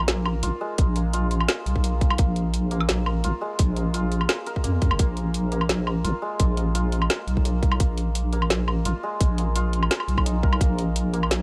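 Opening on a Bb5 chord, this dark, cinematic excerpt of half-time drum and bass at 171 BPM sets shimmering, ringing santur arpeggios with tape echo against a deep, detuned wobble bass thickened by chorus and a produced kit of woody snare, metallic hi-hats and woodblock, with a tight electronic kick joining up front at 0.8 seconds inside a digital ambience.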